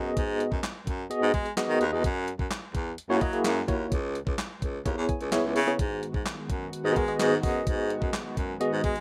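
A straight 4/4 pulse at 128 BPM drives this bittersweet dance-pop fragment in G# minor, with a gated 80s digital drum machine arriving at 0.2 seconds to lay down a thumpy kick, hi-hat, handclaps and a snare soaked in gated reverb, all with a tape-warm, sampler-style punch. Underneath, a breathy baritone saxophone carries the bass line, whispered and intimate with a soft attack, light vibrato and a sidechain pump. A clean tine electric piano played through a combo amp supplies the chords with a medium tremolo and the same sidechain pumping, and it slips in a short fill at 4.9 seconds. At 5.8 seconds a shimmering, chorused pulse-width pad enters with soft, sustained retro chords that sit quietly behind the rest. The harmony moves from G#m7 through F#7 and C#m7 back to G#m7, and the dry, rough home-demo mix keeps the drums, saxophone and piano up front.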